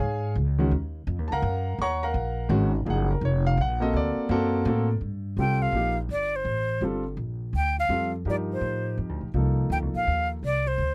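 A breathy, bright jazz flute with vibrato enters at 5.4 s to carry the melody over a woody, growly pizzicato upright bass and a smooth, vintage-toned concert grand piano accompanying with extended chords in this intense, spiritual modal jazz piece, which swings in 3/4 at 167 BPM, settles into G minor at 5.0 s, and is captured dry and close in a 1970s-style studio.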